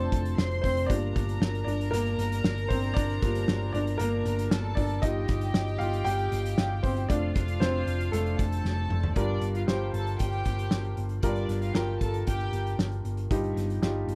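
An intimate, woody upright piano carries a solo through the first 9.2 seconds of this dramatic, bittersweet piano-driven pop excerpt in G minor at 116 BPM, its audible action noise and slight detuning sitting up front over chords moving through F, Gm7 and Ebadd9/G. A dark, round, picked hollow-body electric bass and a loose indie drum kit with a fat snare, punchy kick and pumping small-room sound anchor the straight 4/4 feel, with a drum fill from 8.6 seconds leading into the next section. Behind them, a distant, reedy studio violin section in gut-string period style adds a bowed second line with light vibrato until 12.8 seconds.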